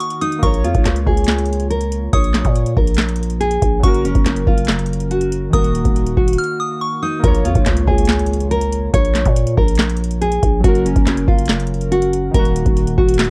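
Worn cassette tape colours this dark, menacing trap excerpt, with a warbling pitch drift and little reverb, cut from a longer piece in Bb minor at 141 BPM with a half-time feel. An up-front, fingerpicked nylon-string guitar carries the melody in a full-bodied, deep classical tone softened by a low-pass filter. A delicate FM tine bell adds a tinkling, bright second line high above through chorus and tape echo, stopping at 7.2 seconds. Lo-fi synth keys in triangle and sawtooth with a noise layer give nostalgic, airy accompaniment through chorus and a filter sweep. A booming analog drum machine, overdriven and re-recorded in a small room, sets a deep kick against a crisp snare, handclaps and metallic hats, while a growling, buzzy 808-style bass enters at 0.4 seconds. After a short break, a very quiet electronic impact marks the second section at 7.2 seconds as the Bbm, Gb, Ebm progression repeats.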